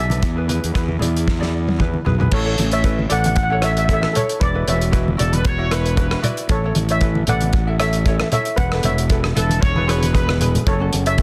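Dense, heavily limited studio sound with light reverb frames this bouncy, sunny calypso fragment, where a shimmering steel pan played with hard rubber sticks carries the melody over mellow fingerpicked ukulele, a round, fuzzy overdriven fingered bass up front, a soul drum kit with a tight kick, fat snare and dark cymbals that fills at 1.3 seconds and again near the close, and damped, low-tuned congas in the background, while a clear vintage horn section adds a second line from 5.2 to 10.5 seconds.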